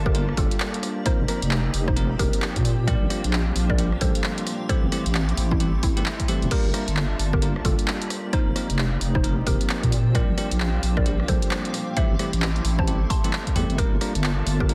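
A skippy, swung two-step UK garage groove at a steady mid-tempo drives this soulful excerpt, with a punchy electronic kick and an analog drum machine's handclaps, hi-hat, rim click and crash, both re-recorded in a large room, over a deep, dark wobble bass with tube saturation that sits up front. Bell-like tine electric piano stabs with delay and a woody, round mallet-like synth pluck carrying the melody through chorus and delay move over a Gm7, F7sus4, Bb6 and Am7 progression. Behind them, a smooth, detuned analog pad and a cloudy, evolving granular pad pump under sidechain, all set in light digital ambience with vinyl crackle on a dense, heavily limited master.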